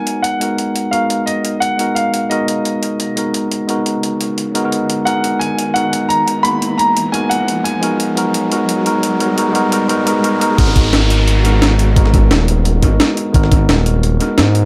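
An echo-heavy mix in moderate spring reverb frames this lush, rolling liquid drum and bass excerpt in G# minor at 174 BPM, opening on a G#m9 chord. A polished grand piano carries the melody through a filter sweep while a bright, clean tine electric piano sits up front in accompaniment, with gritty, pitched-up breakbeat hi-hat and high-tuned snare and electronic riser and downlifter effects shaping the build-up. At 10.6 seconds the drop lands as a smooth, gliding sawtooth synth bass with vibrato and a knocking, layered electronic kick drum take over beneath the electric piano and breakbeat kit.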